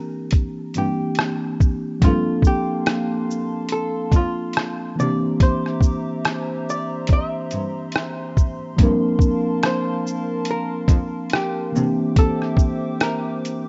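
Melancholic and reflective, this lo-fi hip hop passage, cut from a longer piece, drifts at 71 BPM in 4/4 with a lazy swing on the sixteenths and tuning set just under standard. A mellow tine electric piano sits up front, heard clean through its built-in speakers with a cassette-tape haze, accompanying a harmony that moves between C9 and Gm11. A miked archtop guitar carries the melody in a picked, compressed, hollow-body voice, softened by a low-pass filter. A pitched-down, muffled sampler-style kit of thumpy kick, hi-hat, rim click and shaker also sits up front, while a single bowed cello enters at 0.8 seconds with a dark, woody, distant bass line and vibrato, falling away at 11.8 seconds. From 2.0 seconds a detuned, flute-like pad with a slow attack and chorus holds sustained chords, all within a rough home-demo mix with cassette dullness and little reverb.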